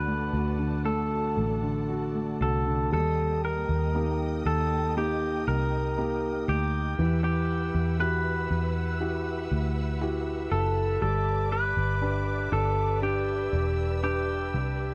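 A slightly broken-up, twangy electric guitar carries the melody through tape echo from the first moment, over intimate concert grand piano with audible action noise, a round, foam-muted electric bass sitting up front, and a lush bowed string section holding sustained chords further back. This hopeful, tender pop ballad moves at a slow 59 BPM in a straight 4/4, with the harmony passing from D7 to Eb at 2.9 seconds and on through Emadd9 to G. The sound is dry and close, in the manner of a 1970s studio recording, and the clip is cut from a longer piece.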